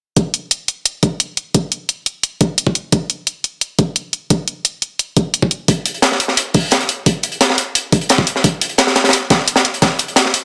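An overdriven, knocking electronic kick drum sits up front in this dark, tense stretch of technical drum and bass, cut from a longer piece and running at 174 BPM in a straight 4/4. The kick has a layered, produced character with a roomy edge, as if re-recorded in a small space, and a high-pass filter trims its low end. An up-front electronic hi-hat plays alongside it from the start, treated with studio reverb. At 5.7 seconds a crunchy breakbeat kit joins with its own hi-hat and a high-tuned snare, sounding gritty and saturated yet smooth, with a rolled-off top and the feel of an acoustic kit in a studio room. The whole passage stays on a single section, a percussion-only arrangement built on these layered drum parts and their shared studio reverb.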